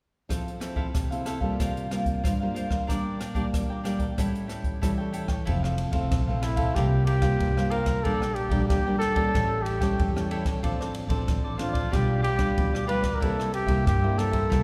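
Heard from further back in a reverberant scoring stage, this joyful, sunny samba and choro excerpt in F major at 93 BPM opens with crisp picked cavaquinho, fingerpicked nylon-string guitar with a hint of finger squeak, and an airy, polished drum kit of hi-hat, ride, rim click and boomy kick, before a woody, growly pizzicato upright bass enters at 5.5 seconds and an intimate, whispered trumpet takes up the melody at 6.4 seconds over chords moving from Fmaj7 toward C7.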